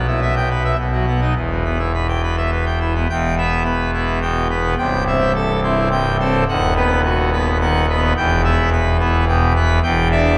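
Bathed in a long, wet cathedral reverb, this brief cut from a longer classical organ toccata in triple time places a solo pipe organ up front on full organ with mixtures, its majestic, brilliant tone and romantic voicing reaching from the deepest bass to the upper treble, as a jubilant opening phrase gives way at 3.1 seconds to a second passage that carries on to the end.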